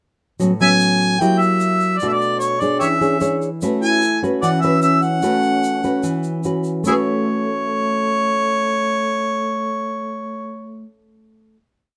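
A relaxed, romantic bossa nova in A major at 149 BPM opens at 0.4 s with up-front, thumb-plucked nylon-string guitar laying down thumb bass and syncopated chords through A69, F#7b9, Bm7 and E6, and a grainy egg shaker sitting in the background. From 0.6 s a mellow, distant-sounding harmonica carries a motif-based jazz melody with scooped notes and tongue slaps, joined at 2.8 s by an airy, straight-toned alto flute adding a harmony line mostly in thirds, before the short piece settles on a final chord at 6.8 s in light reverb.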